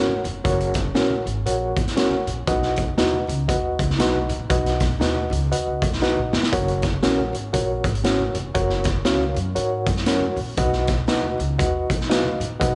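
Joyful and warm, this uptempo 1960s-style soul piece swings at 118 BPM in F# major, moving between F# and B chords. A reedy electric piano with fast tremolo sits up front beside a gritty, saturated garage drum kit with a boomy kick, while a woody, thumpy pizzicato upright bass holds the low end and a dark, clean electric guitar adds stabs with spring reverb from the background. Low-tuned congas stay very quiet underneath, a drum fill arrives at 6.0 seconds, and light reverb and small-room ambience frame the sound.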